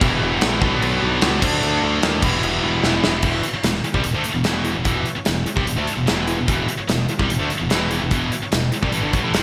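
Bright 1980s-style digital production with light small-room reverb frames this heavy, aggressive hard rock clip, where an up-front acoustic drum kit with gated reverb, a punchy kick and a medium-tuned snare among its crash and hi-hat drives three background guitar riffs (a cranked stack guitar overdriven with lush chorus, a double-tracked, compressed distorted electric guitar, and a scooped high-gain guitar) over a growly, direct picked electric bass, with a drum fill at 2.8 seconds leading into the second section at 3.2 seconds.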